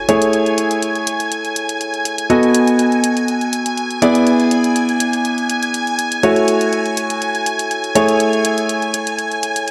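A clear, up-front grand piano riff with delay opens this soulful, energetic piano house excerpt at 122 BPM alongside shimmering, warbling string-machine violin chords in ensemble chorus, while an analog, tape-warm electronic hi-hat joins at 0.1 s as the harmony moves from Amaj7 through B7, E7 and F#m7 back to Amaj7, all set in a lush hall reverb with a dark, warm production.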